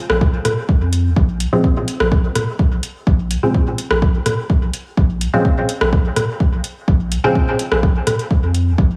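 An overdriven, deep electronic kick with a straight feel anchors this hazy, cavernous dub techno excerpt, joined by a deep house kit of metallic hi-hats and rim clicks that carry overdrive and dub echo and sit up front with a large-room character. Beneath them a round sine sub bass pumps to the sidechain. At 1.5 seconds a muted, detuned sawtooth chord stab arrives with a filter pluck, a fast attack, chorus, phaser and dub echo, a filter sweep shaping it against light digital reverb until it drops out at 7.4 seconds.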